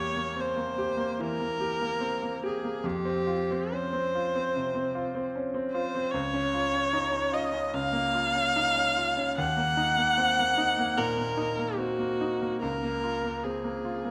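Romantic classical duo in F minor shifting to Bb minor at 6.1 seconds, this elegiac, yearning excerpt moves at 74 BPM in 4/4 with a rubato feel, as a rich, smooth bowed viola with vibrato carries the melody up front and close while a bright, brilliant grand piano with short sustain accompanies beneath it, both sounding throughout in a wet recital hall reverb.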